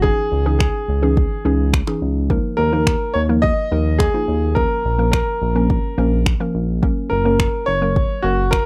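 Dance-pop in F# major at 106 BPM, this short, upbeat and euphoric clip, cut from a longer piece, rides a straight 4/4 pulse from start to finish. A clear concert grand piano carries the melody between F#4 and D#5, sitting up front with audible action noise, long sustain and a slapback echo. Beneath it, a hollow square-wave pluck plays the accompaniment with a bouncy, decaying tone, a fast attack, a noise layer and chorus, while a glossy, nasal synth bass built from pulse and sawtooth waves holds the low end between F#1 and D#2. Both the pluck and the bass pump against the sidechain, and the deep house drum kit of finger snaps and a deep, overdriven kick sits prominently in the mix. The chords move from C#madd9 to D#sus2, A#m and F#, and the whole clip has a dry, close 1970s-style studio sound with little reverb.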